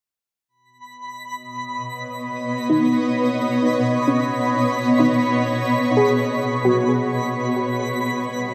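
Bathed in a huge, wet reverb, this weightless, serene ambient fragment in B major drifts in free time, cut from a longer piece. A twinkling granular texture with a sparkling octave-up shimmer enters first at 0.8 s. A shimmering, ethereal pad follows at 1.8 s, holding up-front sustained chords that move from B to Gmaj7 near the end, and at 2.7 s a soft, round, dark pluck adds gentle arpeggios coloured by lush chorus and delay.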